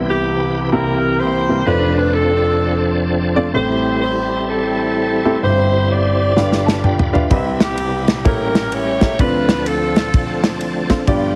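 Heavily compressed for a radio-like sound with light small-room reverb, this hopeful, soulful uptempo gospel piece swings at 127 BPM in C major, as a worn, deep-bassed grand piano and a bright, shouting tonewheel organ with fast rotary speaker, light overdrive and chorus vibrato back a warm, jazz-style saxophone section carrying the melody with light vibrato, until an acoustic drum kit with dark cymbals and a tight kick enters with a fill alongside a piano fill at 6.4 seconds.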